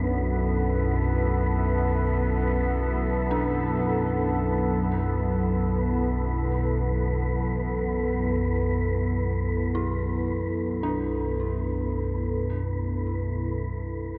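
In free time, this 14.2-second dark ambient drone cut from a longer piece feels unsettling and cavernous, built on a single D69/B chord. An analog drone sits low and up front, its detuned, wave-folded tone warbling and evolving beneath everything else. Above it, a deep, moody pad holds sustained chords with a slow attack, its sub octave and ring-modulated edge softened by chorus and its own reverb. Far in the background, an eerie, inharmonic FM bell traces arpeggios through chorus and tape echo, each note decaying into a long release. A breathy, wind-like noise layer tuned to a single high pitch drifts through the whole passage, and a huge reverb with a 7.1-second tail gives the dark, warm production its vast, hollow space.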